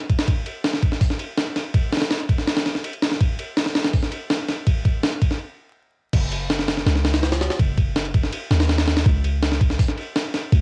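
A gritty, compressed, pitched-up jungle sampler-style drum kit sits up front with a thumpy kick, medium-tuned snare, hi-hat, ride and crash, building through the opening of this atmospheric, nostalgic drum and bass excerpt at 164 BPM, breaking off at 5.4 seconds before the drop at 6.1 seconds brings in a deep, boomy 808-style sine bass with a noise layer and mellow decay, all carrying the character of a home cassette recording with vinyl crackle and moderate studio reverb.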